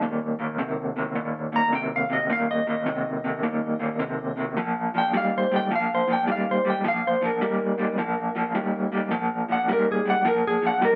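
This soulful, gritty blues fragment opens with a slightly broken-up electric guitar riff, played through a small old amp, its lo-fi, compressed tone pulsing with tremolo in the low register. The groove moves at 106 BPM in 4/4 with a loping swing on the eighth notes, in Eb major and tuned to A4 = 438 Hz. At 1.6 seconds a clean lap steel guitar enters up front, its fingered slide lines and volume swells carrying a warm melody high above the riff. The slide playing serves as the solo voice through the whole passage, over harmony that moves from Eb5 to Bb5 at 4.6 seconds. The band sounds as if it's playing live together in one room, with moderate studio reverb around the performance.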